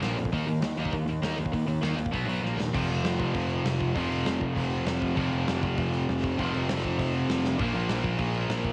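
A straight 4/4 punk rock drive at 198 BPM opens this angry, raw excerpt, with a big rock drum kit of tight kick, medium-tuned snare, hi-hat and crash carrying a rolled-off top and drum fills at 2.4 and 7.4 seconds. An up-front, bright distorted electric guitar and a dark, sludgy distorted guitar in the background grind out power-chord riffs over a fuzz-soaked picked electric bass that sits up front, and at 2.7 seconds a double-tracked overdriven electric guitar joins further back. Light reverb and cassette home-recording grit give the whole thing a rough, lo-fi edge.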